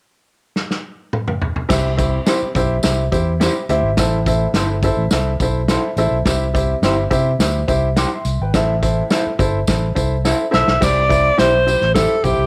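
Warm and uplifting, this uptempo 1960s-style soul cut moves at 105 BPM in a straight 4/4 in C major, tuned slightly low. An acoustic drum kit with a punchy kick and medium-tuned snare opens with a fill at 0.6 seconds, then upright piano, fingered electric bass and tambourine enter together at 1.7 seconds as the harmony settles into alternating C and A minor chords. The piano sounds woody and smooth with long sustain, while the bass comes through amped and growly, and the close, dry tambourine adds a jingly shimmer. An electric guitar through a small old amp plays dark, slightly broken-up stabs colored by phaser and slapback echo. During a second drum fill, a breathy, close-miked alto saxophone steps forward at 10.5 seconds with a jazz-style vibrato solo line. Light reverb and small room ambience frame this fragment of a longer piece.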